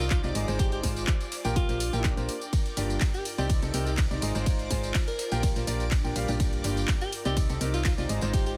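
Bittersweet and energetic, this short cut from a longer piano house track moves at 124 BPM in 4/4 with a light swing on the sixteenths, cycling through Ab6, Bb6, Gm7 and Cm7. A punchy electronic kick sits up front, joined by a tape-warm house kit of handclaps, hi-hat, ride cymbal and tambourine, a gritty, very quiet sampler-style kit of hi-hat and snare, and a band-limited tambourine tucked into the background. A round, dark FM bass with tube saturation anchors the low end, while a clear concert grand piano with a deep bottom plays the riff through tape echo. Behind them, a shimmering string machine holds sustained violin chords with ensemble chorus, and an airy, breathy pad adds a soft, detuned layer. Bass, piano, strings and pad all pump against the kick, and a bright, close-miked alto saxophone with light vibrato carries the melody over the top with its own tape echo. The sound is dry, with little reverb.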